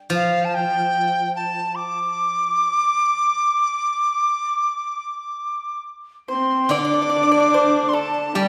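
Wistful and tender, this fragment of Chinese traditional chamber music drifts in a loose rubato around 74 BPM in D yu mode, with a reedy bamboo dizi carrying the melody up front, its buzzing membrane, vibrato and tongued notes sitting over the silvery, ringing fingerpicked accompaniment of a steel-string zither. At 6.3 seconds a dry, percussive pipa and a husky, earthy horsehead fiddle join on second lines, the bowed fiddle sliding between notes with light vibrato. The ensemble sits in the lingering reverb of a recital hall.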